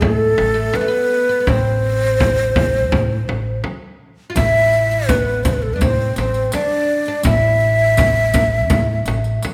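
Soulful and longing, this brief cut from a longer Arabic maqam ensemble piece in A minor moves at an unhurried 83 BPM in a straight 4/4, with a breathy, close-miked ney carrying the melody up front with vibrato and tongued notes over a woody, fretless plectrum-plucked oud second line, a dark pizzicato upright bass, and a deep, saturated frame drum struck with hard hands, while a riq with bright jingles joins softly in the background at 4.4 seconds, all set in a moderate recital-hall reverb.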